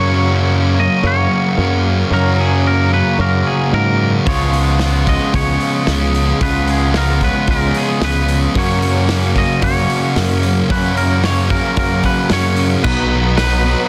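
A hazy, dreamy shoegaze and dream pop excerpt with a dense, heavily limited modern master and small room ambience, moving at 112 BPM in a straight 4/4. From the start, a twangy, bright clean electric guitar carries the melody over a biting overdriven guitar riff washed in reverse reverb and a thick fuzz guitar riff coated in lush chorus. A growly fingered electric bass sits up front beneath them, tracing the changes from Gb through Db7 and back to Gb. At 4.3 seconds a loose indie drum kit enters with punchy kick, medium-tuned snare, hi-hat and dark crash cymbals. At 12.8 seconds the harmony shifts to Cb as a silky analog string pad with ensemble chorus and vibrato enters softly in the background for the closing moments.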